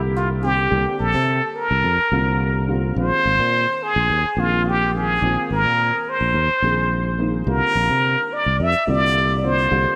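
Funky and soaring, this electric jazz fusion excerpt puts a plunger-muted trumpet up front, its brilliant, wah-wah tone and vibrato delivering a forceful, punchy solo line from 0.2 seconds. Beneath it, a growly fretless electric bass sits direct and amped in the mix, while a dark, boxy baby grand piano with analog chorus and short sustain adds mellow accompaniment in the background over sus4 ninth chords. A moderate plate reverb frames the bright 1980s-style digital production, which carries audible lossy compression artefacts.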